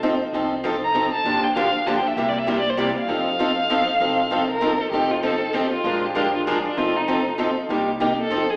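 Acoustic string swing in the jazz manouche style, this charming, lively excerpt moves at a brisk 196 BPM in 3/4 with a swung eighth-note feel, centred on F mixolydian. Two picked steel-string acoustic guitars carry the accompaniment from the start, both bright and boxy with a parlour character and audible finger squeak, one sitting up front and the other gleaming with fresh strings. Beneath them a pizzicato upright bass sits in the background, woody and warm in tone. At 0.8 seconds a single bowed violin enters up front, rich and expressive, with vibrato, a soft attack and sliding portamento. The harmony cycles through dominant and minor seventh chords such as F7, Gm7, C7 and Bb7 across two matching passages. A reverberant recital-hall ambience surrounds the players, while an AM radio colouring gives the whole a broadcast-like quality.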